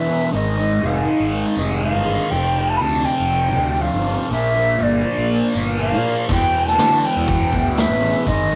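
A thick, double-tracked fuzz guitar sits up front in this dark, trippy psychedelic rock excerpt, its bright, distorted riff coloured by a phaser. Underneath, a fingered electric bass adds a round, overdriven fuzz tone, while a distant concert flute carries an airy, expressive melody with vibrato and tongued notes. A vintage combo organ holds very quiet, buzzy sustained chords with a light vibrato as the harmony moves through G#, F, Bb and Em at 121 BPM in a straight 4/4. At 6.3 seconds a saturated, gritty vintage drum kit enters with a tight kick, medium-tuned snare and hi-hat and a rolled-off top, joined by faint, grainy maracas. The rough rehearsal-room recording has a wet, roomy ambience that adds to the hazy atmosphere.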